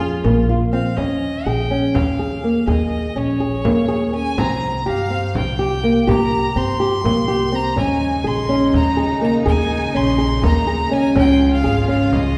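Heard from further back in a reverberant scoring stage, this urgent, hypnotic excerpt of contemporary chamber music moves in 7/8 at 248 BPM, counted in eighths, with a straight feel. A dark, fingerpicked nylon-string guitar sits up front playing arpeggios, while a woody, thumpy pizzicato upright bass with steel strings anchors the low end. A single bowed violin carries the melody with a biting, intense tone, light vibrato and a smooth top, reaching up to C6. A frame drum enters at 0.2 seconds and stays in the background with a small-room character. From 7.8 seconds a lush, focused symphonic string section adds sustained bowed chords with vibrato, as the harmony moves through suspended seventh chords toward a closing Db.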